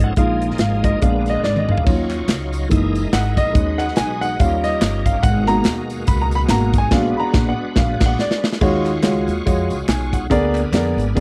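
Solemn and soulful, this swung uptempo gospel passage, cut from a longer piece, opens with a smooth, vintage grand piano taking the solo spot up front while a full, shouting tonewheel organ holds sustained chords through a slow rotary speaker and chorus vibrato. A woody, growly upright bass, played pizzicato on steel strings, anchors the low end, and an acoustic drum kit enters at 0.2 seconds with bright cymbals, a medium-tuned snare and a punchy kick sitting up front in a studio room. Tambourine and group handclaps join at 1.9 seconds, tucked in the background of a live room. The harmony moves through rich extended chords such as Ebm9, Gb13 and Bb7b9b13, with drum fills and a band accent pushing toward a new section at 8.6 seconds that settles on Ebm11. The sound is dry and close, in a 1970s studio style.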